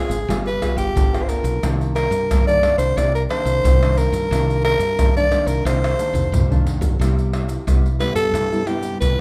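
A straight 4/4 groove at 89 BPM drives this nostalgic, lively samba-and-choro excerpt in C minor, where a raspy, close-miked soprano saxophone carries a growling jazz-style melody with vibrato over thumb-plucked nylon-string guitar with audible finger squeak, a round, punchy fretless electric bass, and distant maracas, pandeiro, tight surdo and tamborim played with hard hands in a large, reverberant studio, with a drum fill from 5.7 seconds leading into a move to Cmaj7 at 7.0 seconds.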